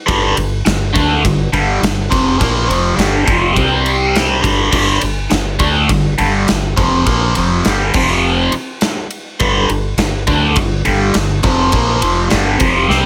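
This excerpt of driving, heavy hard rock opens at once with all three parts together: a cranked stack guitar playing the riff, a woody fretless electric bass underneath, and a gated 80s drum kit. The overdriven guitar sits up front, bright and double-tracked with picked attack, and a phaser colors its tone as it works through a minor progression that briefly touches other power chords before returning home. The fretless bass has a round, hollow-body character, punchy and heard both direct and amped, anchoring the low end. The drums sound acoustic and up front, with a punchy kick, a medium-tuned snare and gleaming crash and ride cymbals ringing through a gated stone room. Light reverb and a small room ambience frame the band, and a drum fill at 12.9 seconds closes the passage just before the cut.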